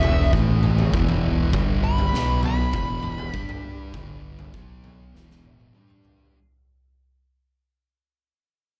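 An oversized, low-tuned acoustic drum kit sits up front in this hypnotic, heavy stoner and doom metal passage at 100 BPM in a straight 4/4. Its boomy kick, medium-tuned snare and toms sound saturated and gritty inside a big, pumping room, and a drum fill arrives at 5.1 seconds. Two thick, picked, distorted fuzz guitars grind out the riff, one warm, the other dark and very quiet beneath it. A round, punchy fingered bass, overdriven with tube saturation, rumbles in the background, while a dark fuzz lead guitar carries the melody through wah, distortion and slapback echo until 5.7 seconds. For the first 1.5 seconds a resonant sawtooth-and-sine drone with slowly moving overtones hovers under chorus and its own reverb as the harmony shifts among A5, E5, G5 and B5. The dark, warm production adds light reverb and small-room ambience, and the whole cut from a longer piece fades out across its length.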